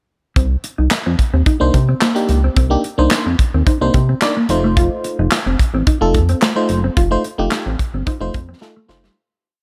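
The sound is dry and close, with barely any reverb, and the drums, bass and piano sit up front in this short, complete piece of early-eighties boogie funk at 109 BPM in C dorian. It carries a danceable, late-night mood over a straight 4/4 groove. A polished acoustic drum kit sets the mid-tempo boogie beat in a small, airy room, with a punchy kick, a medium-tuned snare layered with handclaps, and hi-hat. Alongside it, a glossy chorused synth bass built from pulse and sawtooth waves, with pulse-width modulation and a filter pluck, plays a fat syncopated line with chromatic approach notes. A mellow electric guitar, dark and clean under lush chorus, adds a fingered, muted single-note riff, and from 1.6 seconds a glassy FM electric piano with a bell-like attack punctuates the Cm9 to F7 harmony with syncopated drop2 chord stabs. The track fades out from 7.0 seconds, and a drum fill at 8.6 seconds closes it.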